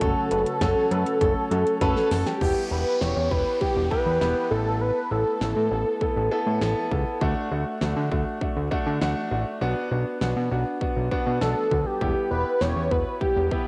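A steady, straight 4/4 pulse at 100 BPM drives this cool synth-pop fragment in E dorian, cut from a longer piece and captured as a home recording on cassette with a moderate, lush hall reverb. A pop drum kit with a punchy kick, fat snare and metallic hats plays throughout, with a drum fill at 1.8 seconds leading out of the opening passage, while a fat, saturated analog bass built from detuned sawtooth and square waves sits up front with a plucky filtered attack. A warm baby grand piano carries the accompaniment through the whole clip, and a swirling, very quiet phased pad with chorus holds sustained chords only until 2.4 seconds. The up-front unison lead, thick and dark with a sub octave, vibrato, a moving notch and tape echo, states the melody, pauses after 6.9 seconds and returns at 11.4 seconds. Beneath it, a faint electronic downlifter runs from 2.4 to 7.2 seconds as the chords move from F#m through Em, Asus2, D and Bm before landing back on Em.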